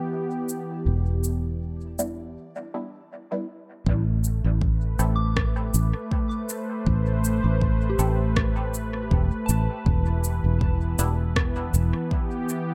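This hazy, spacious ambient dub excerpt opens on a smooth, detuned sawtooth pad holding sustained chords with chorus. Beside it, a soft, pure FM bell traces arpeggios in the background through phaser, chorus and tape echo, and a round, dark fingered electric bass sits up front. A very quiet, bright texture bubbles with random resonant filter steps until it drops away at 2.4 s. Overdriven electronic cabasa and rim click arrive almost at once, sent through dub echo, and a muted, nasal chord stab with a filter pluck and moving notch enters at 2.0 s, soaked in phaser, lush chorus and dub echo. After a short break, a deep, layered electronic kick with tape warmth lands at 3.9 s as the harmony shifts from Em7 to Am7, later settling on Em, and the dry mix carries a gentle swing in its 16ths.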